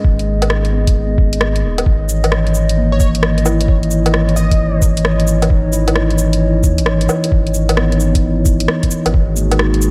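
A swung sixteenth-note groove in 4/4 drives this rainy, wistful future garage excerpt, anchored by a muffled, thumpy electronic kick drum with a tape-aged, small-room character that drops out at 9.3 seconds. Around it, a layered, overdriven garage drum kit of cabasa, hi-hat, rim click and woodblock adds gritty detail. A round sine sub bass sits up front with sidechain pumping, while a moody, detuned analog pad holds slow-blooming sustained chords with chorus and 12-bit sampler grit. A mellow, clean tine electric piano plays accompaniment through ensemble chorus and analog delay. From 2.9 to 4.8 seconds a punchy, catchy unison lead briefly appears high in the register, its detuned saws carrying vibrato, a filter sweep, cassette tape color and tape echo, all within a dreamy mix soaked in lush hall reverb.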